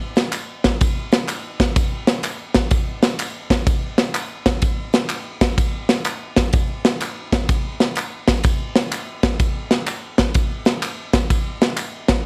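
Soulful and solemn, this gospel excerpt at 126 BPM in 4/4 swings its eighths as an up-front studio drum kit with a punchy kick, medium-tuned snare, ride cymbal and a mid-forward, rolled-off top plays from 0.2 to 12.2 seconds alongside a quieter, small-room layer of tube shaker, tambourine and group handclaps, all set in light reverb.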